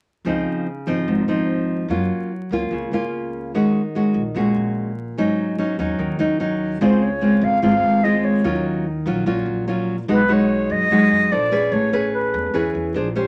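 This short excerpt has a moderate studio reverb and a layer of vinyl crackle, giving it a worn, homey sheen. It is a breezy, sunny bossa nova in a straight 4/4, cut from a longer piece. A fingerpicked nylon-string guitar sits up front from the opening moments, classical in tone, with audible finger squeak as it moves through lush chords such as Dbmaj9, Gbmaj7 and Ebm7. Beneath it, a pizzicato upright bass on gut strings adds a woody, thumpy low end, sitting quieter in the mix. At 6.8 seconds a wooden flute takes the melody, airy and up front, with a straight, tongued tone and rolled-off highs, playing until 12.7 seconds over chords that drift through Cb6, Bbmaj9 and Amaj9.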